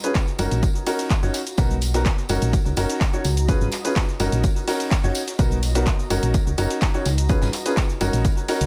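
Piano house at 126 BPM in F# major, this short cut from a longer piece feels joyful and euphoric, riding a straight 4/4 groove through a loop of F#6, Bmaj7 and C#7 chords. A clear, woody upright piano, slightly detuned and a little worn, carries the riff up front between B3 and C#5, pumping against the sidechain and trailing a diffuse ambient delay. Underneath, an overdriven, punchy analog kick enters at 0.2 seconds alongside a round, dark FM bass from 0.4 seconds, its fast attack and decay also pumping in the mix. A layered electronic house kit adds handclaps, shaker and bright hats, while tambourine and congas played with soft hands sit in the background and a very quiet, dry reggae kit with a high-tuned snare and rolled-off top adds depth. High above, a granular cloud pad holds a blurred, evolving A#5 with its own built-in reverb, and the whole mix sits in light reverb with small room ambience.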